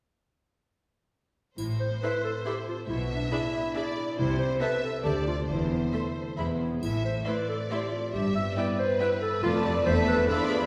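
At 1.6 s a bowed violin section carries the melody with focused vibrato as a mellow clarinet sings a second line, ringing fingerpicked harp arpeggios spill over lush cello and double bass lines, and a faint, bright triangle sparkles, returning at 6.8 s; from 2.0 s a distant second violin line floats above and close violas fill the middle of this playful, whimsical film cue in three, its magical, mischievous mood bathed in the wet reverb of a scoring stage heard from further back in the room.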